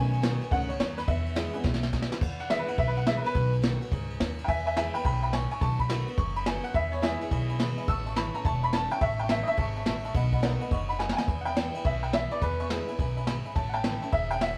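Rollicking, upbeat swung rockabilly in this short cut opens with a detuned, jangly honky-tonk upright piano solo before a brilliant, woody upright piano takes the melody up front at 2.4 seconds, over a woody, thumpy pizzicato upright bass on gut strings, a dark, smooth jazz kit played with brushes and a boomy kick, and a full-bodied picked steel-string acoustic guitar with audible finger squeak in the background, all in a rough rehearsal-room sound with moderate reverb and a drum fill at 11.0 seconds leading into the final section.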